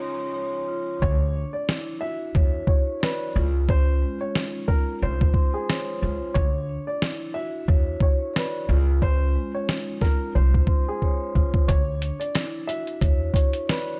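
At 90 BPM with a swung 16th-note feel, this soulful, confident boom-bap hip-hop excerpt opens with a one-second break where lush bowed strings and mellow soft-mallet vibraphone sit together, before a muffled, pitched-down sampler kit with a thumpy kick and fat snare arrives up front at 1.0 s alongside woody pizzicato upright bass and a dark, intimate upright piano melody trailed by digital delay, its hi-hats muted until 11.7 s, with a drum fill running from 11.0 s, all over small room ambience and chords moving between C#maj9 and Dmaj9.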